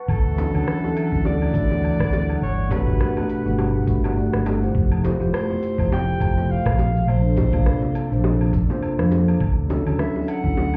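Sunny and warm, this sunset chillout excerpt moves at 103 BPM in 4/4 with a swung sixteenth-note feel, centred in D major. A bright, close-miked soprano saxophone carries the jazz-style solo melody with vibrato and digital delay, floating over an airy, breathy pad whose detuned, chorused chords fade in slowly and linger. The hollow-body short-scale electric bass sits up front, dark and round through an amp, while a clean tine electric piano, also touched with delay, comes in at 0.4 seconds through a combo amp. Underneath, a gritty, thumpy sampler-style kick anchors the groove alongside an overdriven, layered deep house kit of hi-hat, rim click, shaker and woodblock, with tight, high-tuned bongos played with hard hands in the background. The harmony drifts through Dmaj9, Gmaj9, Fmaj9 and Bbmaj9 before returning to Dmaj9 at 9.4 seconds, and the whole mix sounds muffled, as if heard through a wall in a club.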